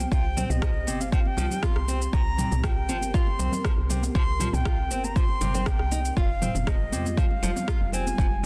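Warm and earthy, this afro house piece moves at 119 BPM in a straight 4/4, cut from a longer work and tuned to A4 = 438 Hz, with an airy, vibrato-laden silver concert flute carrying the melody through tape echo while a moody, detuned analog pad sustains chords in the background under chorus and sidechain pumping. A round, woody FM bass and a small, fingerpicked nylon-string guitar playing arpeggios from 0.1 seconds both pump with the sidechain, the guitar also trailing tape echo. An overdriven, up-front electronic kick and a layered deep house kit of rim click, shaker and toms sit in studio reverb beside soft-handed congas, all held in light digital ambience and a dense, heavily limited master as the harmony moves from C5 to Fmadd9 at 6.2 seconds.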